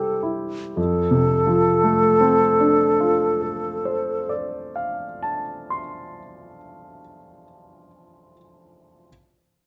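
Dreamy and luminous, this short excerpt from a longer impressionist classical piece pairs a concert flute with a grand piano in F major, moving freely in rubato at 39 BPM in 12/8. The airy, mellow silver flute carries the melody on A4, with vibrato, a soft attack and expressive shading, sitting up front in the balance. Beneath it, the brilliant concert grand spans from a deep bass F2 up to C6, its polished, present tone and short sustain opening on a rootless Fmaj9 before settling onto F6 at 0.8 s. The flute falls silent at 4.3 s, and the piano carries on alone until 9.1 s. Close, detailed microphones capture both instruments intimately, while a recital hall's generous reverb, with an RT60 of 1.4 s, adds a soft halo around them.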